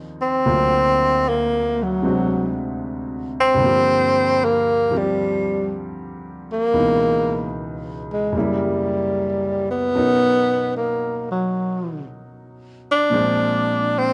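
Tender and intimate, this jazz excerpt moves at an unhurried swing in 4/4. A clear baby grand piano sets down the accompaniment from the very start, its natural tone carrying long sustain and a touch of audible action noise, placed up front. The breathy tenor saxophone enters at 0.2 seconds to carry the melody as a soloist, its mellow subtone shaded with vibrato and scooped notes in a classic jazz style, also sitting close to the listener. The harmony drifts through rich altered and extended chords, opening on D7alt and passing through Gm7, Dbm7 and Bmaj9 before settling on Bb9. A moderate large-studio reverb surrounds the pair, and the dark production keeps the sound soft and rounded, ending as both parts play through to 14.1 seconds.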